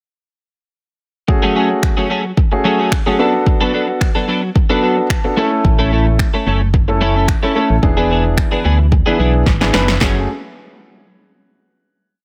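A deep house drum kit with a deep kick, punchy snare, finger snaps and handclaps drives this bittersweet 110 BPM dance-pop piece in F# minor with a four-on-the-floor beat, beneath intimate concert grand piano stabs with audible action noise and sidechain pumping, a clean, compressed twelve-string electric guitar playing a choppy funk-style riff with ensemble chorus, and a hollow, organ-like FM bass that enters at 5.6 s with a syncopated figure, following a piano fill at 4.8 s, with a drum fill at 9.5 s leading into a closing F#madd9 chord at 10.0 s.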